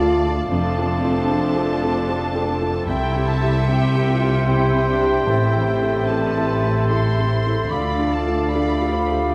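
Muted, con sordino violins carry a veiled, vibrato-rich melody from the first moment of this tender, moving cinematic orchestral passage, cut from a longer piece. It moves in a rubato 3/4 at around 75 BPM in C major. Around them, a hollow silver flute, a smooth clarinet, a distant, roomy oboe and a second, closer violin line add supporting lines. A felt-muted upright piano sits intimately in the background beside a very quiet, dark viola section and a ringing, thumb-plucked harp spinning arpeggios, while a very quiet French horn section holds warm, tight sustained chords. Dark cello and double bass sections anchor the bottom with light vibrato as the harmony passes through Dm, F6, C and Am before returning to Dm near 7.7 seconds, all bathed in a wet scoring-stage reverb.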